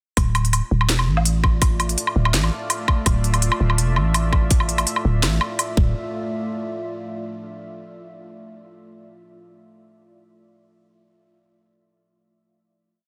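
Spacious and cinematic, this short piece of half-time drum and bass in D minor moves at 166 BPM in 4/4, its half-time feel giving the drop room to breathe. From 0.2 seconds a tight, tape-warm electronic kick sits up front beside a sparse kit of cracking snare, crisp closed hats and a low woodblock, both treated with studio reverb. Underneath, a growling, buzzy 808-style bass holds long dark notes with a fast attack and decaying tail, centred on a Dmadd9 harmony. A deep, moody pad of detuned sawtooth unison over a sine sub octave fades in slowly from 1.1 seconds, carrying chorus, built-in reverb, vintage 12-bit sampler grit and sidechain pumping as its chords shift. The beat and bass drop away near 6.0 seconds, leaving the pad to sustain a final Dmadd9 chord until 7.4 seconds, all within a dense, heavily limited modern master and digital ambience.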